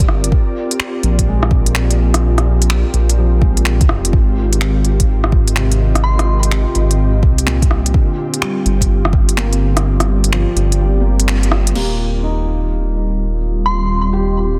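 A deep, rumbling detuned saw bass sits up front in this wistful, rainy future garage excerpt at 126 BPM with a swung 16th feel, pumping under the sidechain alongside a soft, felt-muted upright piano with digital delay and an ethereal, airy pad that gets a filter sweep from 11.8 seconds. An up-front electronic kick drives the groove until it stops at 9.3 seconds, while a tape-colored organic electronic kit adds smooth hi-hats, finger snaps, rim clicks, a crash cymbal and a softly clipped snare, all re-recorded in a small room. A glassy, warbling FM synth bell with 12-bit grit, chorus and tremolo chimes a brief high note at 6.0 seconds and again near the end, over chords moving from Bb7 through Fm7/Ab and Gm to Eb6 in a dense, heavily limited modern master.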